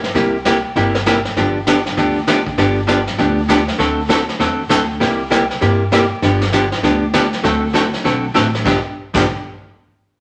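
A cheerful, swinging western swing excerpt in G mixolydian at 198 BPM, cut from a longer piece, with an up-front vintage brush kit of dark cymbals, a medium-tuned snare and punchy kick alongside a woody, thumpy gut-string upright bass played pizzicato. A clean, compressed hollow-body archtop guitar, miked and amplified, sits up front with a dark, picked tone, comping through C7, G7, D9 and D7 before landing on G7 at 8.6 seconds. The whole band plays in a wet large studio reverb.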